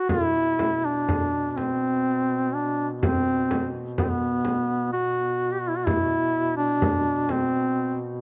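Close, detailed microphones and light reverb give this short excerpt of a Caucasian lament an intimate presence. A warm duduk carries the melody up front, its smooth top and vibrato singing between B3 and G4 in B phrygian. Beneath it, a dark duduk holds a drone on B2, sounding distant and roomy, with its own vibrato and scooped notes. A deep, large frame drum adds acoustic percussion with a vintage, band-limited character, continuing until 7.5 seconds. The folk piece moves in a rubato 3/4 at about 63 BPM, tuned to A4 = 438 Hz, and its mood is solemn and mournful throughout its roughly 8.2 seconds.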